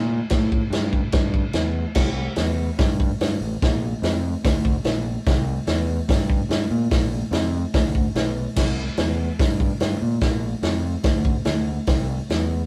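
A bright, growling fingered electric bass pushed through overdrive opens this raw, menacing garage rock fragment in straight 4/4, joined a fraction of a second later by an up-front vintage drum kit with a punchy kick, medium-tuned snare, hi-hat and crash, sounding natural with a rolled-off top, all caught in a rough rehearsal-room recording with light reverb.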